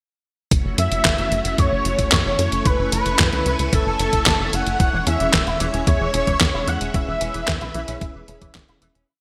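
Italo disco at 112 BPM in F# minor, danceable and melodramatic, where a thumpy four-on-the-floor kick and a tape-warm machine beat of claps, closed hats and a fat gated snare drive a dark, punchy sixteenth-note sequencer bass under lush string-machine chords moving from F#m7 to C#m/E, while a thick, nasal detuned unison lead sings motif-based phrases with chorus and delay, a twangy envelope-filtered guitar arpeggio joins in the background near 5 seconds alongside round off-beat synth-brass stabs, and the bright 1980s-style hall-reverbed mix fades out from 6.2 seconds.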